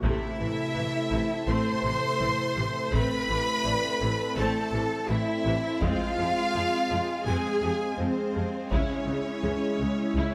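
A cinematic hybrid of orchestra and electronics, this brooding, futuristic film-score passage moves at a measured, straight pulse in 4/4, cut from a longer piece and moving from A minor through F minor at 5.8 seconds to C-sharp minor at 8.7 seconds. A close, smooth cello section and a distant double bass section, bowed with vibrato and expressive portamento, carry the low end, while a lush violin section sings a focused second line above. A clear viola section sits in the background with accompaniment, and a French horn section with light vibrato holds sustained chords in a classical style. An airy, breathy pad with a slow attack, a noise layer, chorus and phaser adds bright sustained harmony behind the orchestra. A taiko ensemble struck with heavy sticks drives the drums until 9.4 seconds, and a felt-muted upright piano, intimate and mellow with audible action noise and digital delay, threads soft texture through the scoring-stage reverb.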